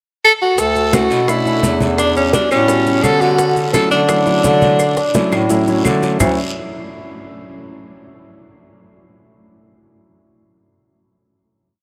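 Congas with slaps and open strokes, bongos in steady eighths, a woody, saturated claves time line, a raspy guiro and grainy maracas drive this short, sunny and lively Afro-Cuban jazz piece, where a clear tenor saxophone with vibrato leads up front with a motif-based melody over a roomy bass clarinet tumbao that anticipates the chords and a warm concert grand piano's syncopated rootless stabs, the band sounding in a vast, echoing cathedral space until a final chord rings out from 6.2 seconds.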